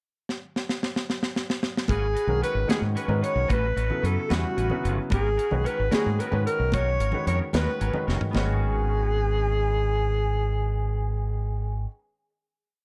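Electric jazz fusion in G# minor at 74 BPM in 6/8, driving and intense, opening with a drum fill from the crisp kit with its punchy kick and high-tuned snare before a breathy alto saxophone enters at 1.9 seconds with a vibrato-laden, motif-based hook, slapback echo and plate reverb, doubled in unison by a very quiet, hollow concert flute. Beneath them a bright fingered electric bass drives a syncopated riff up front, a clear baby grand piano adds syncopated quartal chord stabs from 2.3 seconds, a twangy clean electric guitar strums funk shapes in the background through ensemble chorus, and very quiet, ringing congas play an evenly spread pattern until 8.6 seconds. The harmony moves between G#m11 and A13 before another drum fill at 8.1 seconds leads to a final G#m7 chord at 8.3 seconds, all within a dark, warm production with light reverb.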